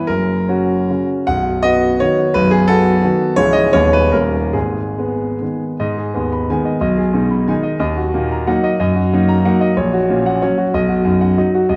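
Heard through a wet recital hall reverb, an up-front concert grand with a deep bass and open tone plays a proud, rustic romantic classical dance in triple time, its dotted rhythms pushed and pulled with rubato, turning to a new section at 5.8 s in this passage cut from a longer piece.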